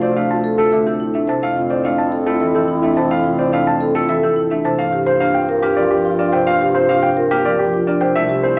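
Hypnotic and propulsive, this minimalist classical pattern music in 3/4 is cut from a longer piece and moves through Dm7, Fmaj7 and Gm7. An up-front concert grand piano with deep bass carries the melody over round, dark marimba arpeggios played with soft mallets, while a ringing, fingerpicked concert harp accompanies, a smooth bass clarinet holds the bass, and an airy alto flute with vibrato and a crisp attack sits in the background as a second line. All five parts play throughout the 8.6 seconds, set in a wet recital hall reverb and heard through an AM radio sound.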